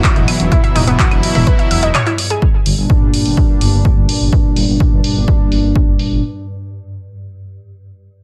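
A dry, punchy electronic kick sits up front at 126 BPM in a straight 4/4, joined by a dry analog drum machine playing claves, handclaps, hi-hat and toms through low-pass filters, while a dark, rumbling detuned saw bass pumps beneath from 0.2 seconds in this melancholic, hypnotic melodic techno excerpt. Over an Esus2 chord, a rich chamber string section holds soft, intimate sustained chords in the background and a warbly, lo-fi dusty pluck spins chorused, delayed arpeggios, both falling away at 2.4 seconds after a short break. A bold, brassy analog pad with vintage 12-bit sampler grit stabs throughout and takes a filter sweep as the harmony moves to Gm, all above a very quiet, swarming granular drone.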